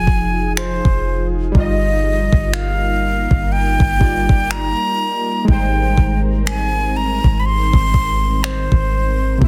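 A breathy, close-miked concert flute carries the moody, longing melody up front with a soft attack and tape echo, floating over a slow contemporary R&B groove at 61 BPM with a swung sixteenth feel. Round analog keys with chorus and a filter sweep play the accompaniment through Fm7, Ebmaj7/G and Abmaj7, while a glassy, ethereal FM pad sustains chords in the background. A deep, sine-like 808-style bass sits forward beneath an electronic drum kit of finger snaps and a knocking kick from 0.1 seconds, all in a dense, heavily limited modern master.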